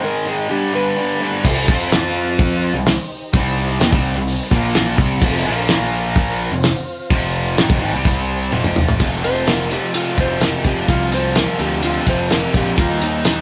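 A bright, up-front overdriven electric guitar and a very quiet semi-hollow guitar open this gritty, brooding classic rock excerpt from a rough rehearsal-room take with their riff beneath a brief dark, clean lap steel slide line, then at 1.4 s a punchy fuzz bass and a dry, damped 70s drum kit with fat snare and tight kick arrive while a faint tonewheel organ holds chords with key click and slow rotary, and after a drum fill the lap steel returns for a slide solo at 9.2 s, set in a small room with moderate reverb.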